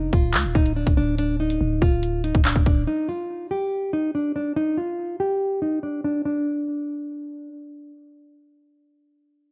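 Dark and menacing, this drill excerpt at 142 BPM in a half-time feel sets a thumb-plucked nylon-string guitar melody in D phrygian, its classical tone carrying audible finger squeak under a low-pass filter that sweeps across the first 6.3 seconds. A growling, buzzy 808-style bass with a fast attack and decaying tail sits up front over a D minor chord alongside an electronic drill kit of hard-clipped kick, bright hi-hats and handclaps. Bass and drums drop out around 2.9 seconds, leaving the guitar alone in light reverb until it stops at 7.5 seconds.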